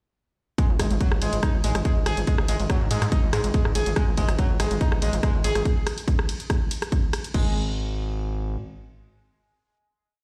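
A screaming, wave-folded synth lead hammers a repeating riff over an overdriven four-on-the-floor kick, a gritty rolling sixteenth-note sawtooth bass with sidechain pumping, and dry analog drum-machine hats, rim, ride and crash, driving an industrial, relentless peak-time techno drop that echoes through a bare stone room from 0.6 seconds until the bass rings out alone to 8.6 seconds.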